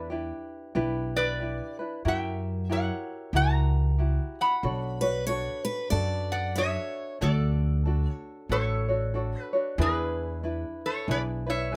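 Sunny and languid, this short Hawaiian excerpt moves at an easy 93 BPM in 4/4 with a lilting swing on the eighth notes, opening in B minor before brightening into D major at 7.2 s. A metal-body resonator slide guitar carries the melody up front, its metallic, nasal tone shaped by fingerpicks and the glide of the slide. Beneath it, a tenor ukulele fingerpicks a light accompaniment while a pizzicato upright bass with steel strings adds a woody, growly foundation. Between 5.0 and 7.2 s a picked steel-string acoustic guitar slips in a brief second line, with a touch of finger squeak audible. The chords drift through Em7, F#7b9 and Bm9 before settling on Dmaj7 and E7, all captured by close, detailed microphones in a light reverb.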